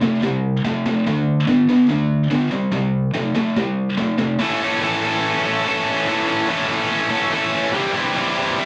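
A bright, tight, double-tracked electric guitar, picked and distorted and sitting up front, plays alone through this swaggering, sunny rock fragment, moving through C5, D5 and C5 power chords before shifting to A and then C from 4.4 seconds, all captured in a dry, close 1970s-style studio sound with light reverb.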